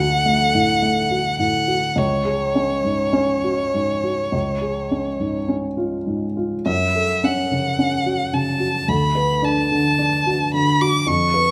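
Solemn and melancholic, this romantic classical excerpt for violin and grand piano moves at 50-57 BPM in 4/4 with a rubato feel, tuned to A4 = 439 Hz. A rich, focused violin, bowed by one player with vibrato, carries the melody up front from C#5 to D6. Beneath it, a dark, mellow baby grand piano with audible action noise and short sustain plays an intimate accompaniment through chords from D to C#sus4, C#, F#m and Bm/D, in a large studio with moderate reverb.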